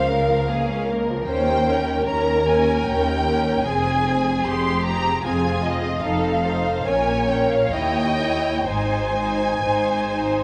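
Serene and lyrical, this slow romantic movement for string orchestra sways in a rubato 3/4 at 62-78 BPM, with an up-front, warm violin section carrying the expressive melody over a distant second violin line, a clear viola accompaniment, and lush double basses alongside cellos in the background, all bowed with vibrato in a moderate scoring-stage reverb as the harmony moves from Bbm/Db to settle on Ab at 8.7 seconds.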